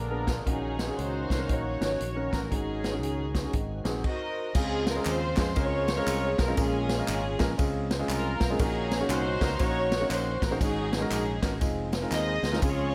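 Uptempo gospel in Db major at 119 BPM, with a jubilant, uplifting swing: a floating, soft-attack string section carries the melody through a tape echo over warm grand piano, a round, punchy fingered electric bass and an up-front big-band drum kit with a medium-tuned snare. A dark, distant French horn section and a very quiet, lightly overdriven tonewheel organ with key click and slow rotary hold sustained chords until about 4.0 seconds; the organ returns briefly at the very end. From 4.6 seconds a tube shaker and group handclaps join, and a drum fill at 12.1 seconds closes this short cut from a longer piece, all set in a small room reverb.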